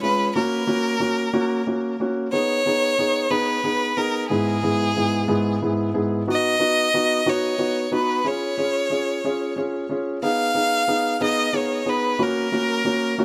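A tender, swaying pop piece in F# major, moving in a gentle 6/8 at 61 beats per minute, heard here as a short section cut from a longer work. A single bowed violin carries the melody up front, its tone clear and focused with close vibrato and a touch of digital delay, while a felt-muted upright piano accompanies throughout with a soft, mellow, intimate sound. The chords move from F# through G#m, E/G# and B to C#, then back to G#m before settling on F#/A# at 12.2 seconds, all set in a light reverb.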